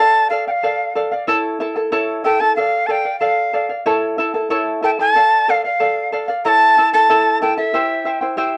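A breathy, bright quena leads this short Andean folk fragment, its wooden, reedy tone up front with vibrato, tongued attacks and an audible chiff as it carries the melody from the start until 8.2 seconds. Beneath it, a mellow charango fingerpicks a shimmering accompaniment on double strings, some doubled at the octave, moving between D minor and A before closing on C, in a 2/4 feel that is at once melancholic and festive. The short phrase is heard twice in a small room with moderate reverb, and the recording carries the worn, warbling pitch drift of old cassette tape.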